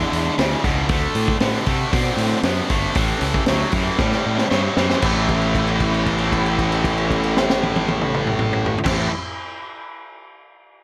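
Raunchy and gritty, this short cut from a longer blues rock power trio and southern rock piece in A mixolydian moves at a straight 116 BPM in 4/4, with a tight, bright, double-tracked distorted guitar riff up front over a round, fuzzed fingered electric bass, a punchy vintage drum kit with dark cymbals and a high-tuned snare that plays a fill from 4.0 s, and a very quiet, thick overdriven tonewheel organ holding sustained chords through a slow rotary speaker, all in light reverb; a held note arrives at 5.0 s as the chords move from E7 through D7 and A7 to A9.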